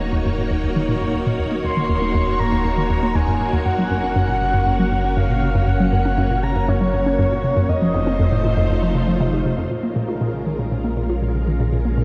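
Drenched in an enormous, dark reverb with a long tail, this cut from a longer piece of ambient, sequencer-driven space music has a cosmic, hypnotic pull at 119 BPM in a straight 4/4, set in Eb dorian. A hollow, bouncy square-wave pluck, detuned and edged with noise, carries the riff through chorus and tape echo, and a filter sweep runs over this arpeggio sound until 9.7 seconds. Alongside it, a lush vintage string machine sits up front, holding slow-blooming sawtooth chords with an ensemble chorus, while a round sine sub bass anchors the low end. From 1.6 to 9.2 seconds, a breathy, flute-like lead with gentle vibrato floats a melody high above, softened by subtle chorus and tape echo. The harmony moves from Ebm7 through Gb and F7 before arriving on Bbm7 as a second section opens at 9.7 seconds.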